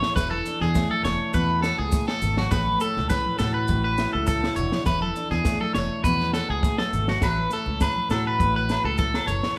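Vinyl crackle and a moderate stone-room reverb frame this carefree, danceable highlife guitar band cut from a longer piece, where an up-front, twangy electric guitar at the edge of break-up plays phaser-tinged arpeggios over a boxy fingerpicked parlour acoustic with audible finger squeak, a round, foam-muted fingered bass, a dry compact cocktail kit with a high-tuned snare and punchy kick, very quiet hard-hand congas, grainy background maracas, and saturated, ringing agogo bells that join at 7.2 seconds.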